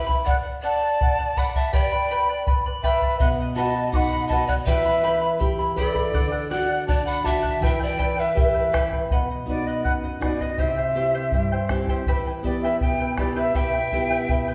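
A straight 2/4 pulse at 81 BPM, carried by a deep, dry bombo sitting up front, underpins this melancholic yet festive Andean folk excerpt in E minor. A shimmering, fingerpicked charango opens. A distant cane quena with airy vibrato sings the melody, while a breathy, wooden pan flute with a soft attack and chiff traces a second line, dropping out at 8.9 seconds and returning at 13.6; a bright, full-bodied nylon-string guitar joins at 3.2 seconds, and the ensemble rings in a wet recital hall.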